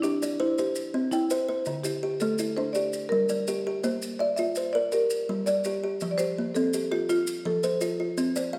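Hypnotic and warm, this short excerpt of southern African traditional music turns on an mbira-style interlocking cycle at 111 BPM in a straight 12/8, set in F major. A marimba played with soft mallets carries the melody from start to finish, its rosewood bars giving a round, woody tone. Alongside it a kalimba spins arpeggios across a broad range, its thumb-plucked notes short, hollow and boxy, sitting up front in the mix. Maracas add a grainy, compressed shimmer of percussion further back, running until 8.5 seconds. The harmony moves from C through D5, G minor, B-flat 5 and back to G minor before settling on F, while a moderate reverb lends the sound the spacious air of a church or concert hall.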